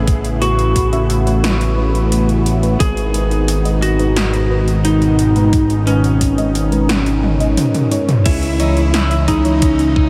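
Synthwave with a moody, nocturnal feel, this brief cut from a longer piece moves in a straight 4/4 and sits in a dreamy mix soaked in a huge ambient reverb. A fat, detuned sawtooth bass sits up front, pumping against a thumpy, sampler-style electronic kick, while 80s pad drums add gated snare and toms, metallic hats, crash and overdriven grit, with a drum fill from 7.2 to 8.3 seconds. A lightly driven, slightly broken-up lead guitar carries the melody through analog delay over a swirling, wave-folded pad that pumps with the sidechain and shimmers through phaser and chorus. A soft, round FM electric piano adds dark, decaying stabs in the background, with its own chorus, phaser and delay. At 8.3 seconds the harmony shifts to C#madd9, and a bright string machine violin line and clean, picked guitar arpeggios enter quietly behind the mix.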